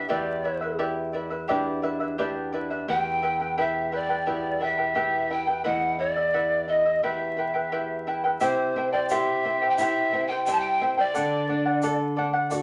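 Andean folk in E minor at 87 BPM, this festive, earthy fragment puts an airy, chiffy wooden pan flute with tongued notes and vibrato up front over a shimmering, fingerpicked charango and a dark flamenco guitar, moving from G/E through Em and B/E before a grainy, bright tube shaker joins at 8.4 seconds as the chords shift to C and D, all set in a wet studio reverb with vinyl crackle.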